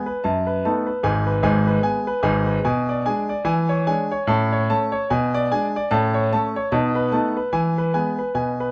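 A clear, up-front concert grand piano plays solo stride jazz in A major at 148 BPM with an exuberant, swinging 4/4 lilt, its natural tone and deep bass ringing in a small room as the harmony moves from B7/F# and G#m through Bm6, E6 and A to close on B7 and E in this 8.7-second excerpt from a longer piece.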